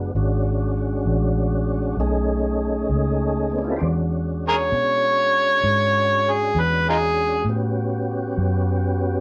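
A slow 12/8 blues swagger at 66 BPM in E mixolydian, where a smooth, clicking tonewheel organ holds thirteenth chords through a slow rotary speaker and chorus vibrato over a dark, round, foam-muted fingered bass, and an overdriven, gritty harmonica enters at 4.5 s up front with tongue slaps, scooped notes and jazzy vibrato, all in a wet, reverberant live-room sound in this short cut from a longer piece.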